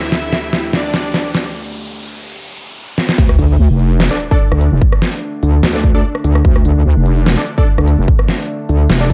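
A dark, warm slab of chaotic, heavy wobble dubstep in D minor at 147 BPM with a swung half-time feel, this cut from a longer piece opens on a brief, smooth supersaw melody with phaser and dub echo over an evolving, warbling wavetable pad, a background riser and sub drop, and crisp-hatted dubstep drum fills. It then drops at 3.2 seconds into a punchy electronic kick and a detuned square-wave wobble bass up front, followed at 3.4 seconds by an aggressive, metallic FM wobble bass, and joined at 4.1 seconds by detuned supersaw stabs with a filter sweep and dub echo.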